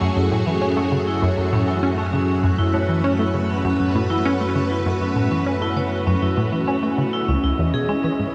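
Expansive and mysterious, this short cut from a longer ambient, sequencer-driven space music piece moves at 99 BPM in a vast, echoing space, where a tight, driving sawtooth sequenced synth riff with detuned filter plucks and phaser sits up front beside a lush, vintage full-ensemble string machine holding phased chords, while a dark, ringing vibraphone with hard mallets spins arpeggios through delay and shimmer reverb over an evolving, pulse-width-modulated analog drone bass, all turning from F#madd9 to C#madd9 at 7.3 seconds.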